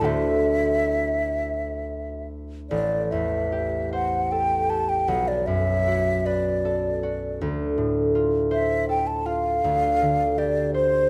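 Impressionist classical duo for flute and harp, a mysterious, hazy fragment cut from a longer piece, moving in a free, rubato 6/8. Up front, the concert flute carries the melody with an airy, mellow, hollow tone, vibrato and tongued notes, while the fingerpicked concert harp, also close, supplies a ringing accompaniment. A new passage opens at 2.7 s as the harmony drifts through Am7, Bm7, Dm7 and G9sus4/D, set in a moderate recital hall reverb and captured with close, detailed microphones.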